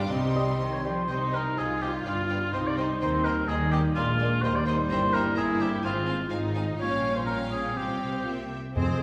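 A quick 2/4 pulse at 126 BPM, pushed and pulled with rubato, drives this stormy, urgent classical-period orchestral passage in C minor, moving from Cm through Eb, Bb7 and Fm/Ab to a Csus4 that settles on C at 8.3 seconds. A warm, roomy oboe sits up front with a second line, while a clear violin section carries the high melody in the background over a lush, focused second violin section, rich close violas, smooth cellos and double basses, and tight, mellow French horn chords. A dark, distant clarinet, a barely audible flute section and a very quiet, soft-attacked bassoon appear only at the opening and again from 8.8 seconds, and round, softly struck timpani mark the start and return at 7.8 seconds, all bathed in a wet recital-hall reverb.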